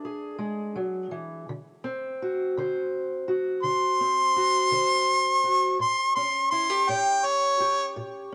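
A clear harmonica takes the melody up front from 3.6 seconds, playing in a jazz-inflected style with light vibrato and scooped notes that give this short acoustic country blues fragment its laid-back, gritty character. Before it arrives, a fingerpicked steel-string parlour guitar opens the piece at 0.0 seconds and carries the accompaniment throughout, its dark, boxy tone sitting up front but lower in level than the harmonica. The guitar moves through E7, D7 and A7 in an unhurried, straight 12/8 feel, tuned slightly sharp to A4 = 442 Hz. Both instruments carry the grain of cassette tape, and a light reverb frames this homemade recording, which is cut from a longer piece.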